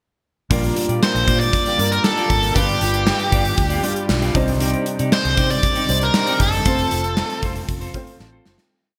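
A smooth, overdriven lead guitar carries hook-phrase motifs from 1.0 to 7.4 s through shimmer reverb and delay in this glossy, uplifting 1980s-style pop piece in Bb major at 117 BPM, set over a punchy gated drum kit with a big backbeat, a dark, foam-muted fingered bass playing a syncopated pop-funk line with chromatic approach notes, a concert grand piano pushing open drop-2 chords through analog chorus and adding short fills, and a twangy clean electric guitar playing funk-style rhythm in the background, before a fade-out that begins at 6.7 s.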